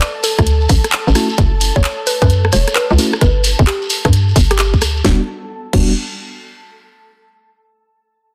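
A skippy, moody two-step UK garage excerpt with a 16th-note swing, opening on a drop where a woody, round mallet-like synth pluck carries the melody through chorus and digital delay over an ethereal, detuned pad pumping beneath, a garage kit with a cracking, softly clipped snare, rim clicks, handclaps and hi-hats, and a grainy, distant shekere. At 0.4 s a hollow, bouncy FM bass with tube saturation sits up front alongside a tight, layered electronic kick, and from 1.2 s a mellow, clean tine electric piano adds delayed stabs as the chords move from F#m7 to Gsus2. The pluck, pad and shekere drop away around 5 seconds as the harmony settles on Em9, leaving bass, kick, drums and piano in a dense, heavily limited modern master.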